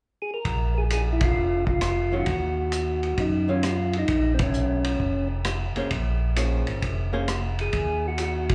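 Heard through a club's PA with a touch of room reverb, this soulful, bluesy soul jazz organ trio excerpt swings in 4/4 as a mellow, round percussive tonewheel organ carries the melody through a slow rotary speaker and slapback echo, a fat, lightly overdriven tonewheel organ with chorus vibrato and key click holds down the bass, a saturated vintage drum kit with dark cymbals and a tight kick keeps time, and a hollow-body archtop guitar adds clean, picked accompaniment from 2.1 to 7.3 seconds, with the band hitting accents at 1.1 and 4.3 seconds.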